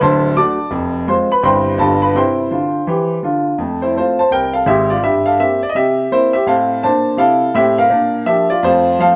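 A clear grand piano opens this short, exuberant stride jazz passage alone, swinging at 167 BPM in 4/4 with a lilting eighth-note feel. Sitting up front in the mix, the piano ranges from deep bass notes at D1 up to D6, covering the full sweep of the style. The harmony starts in C major, moving through D7, Fm and G9 before resolving to C, then shifts to F major at 3.6 s for a new section built on F, C7/G, F/A and Bb. A stone room's reverb lends a lively, ringing ambience around the instrument, giving the impression of a band playing live in one space. The clip is cut from a longer piece and ends back on F at 9.2 s.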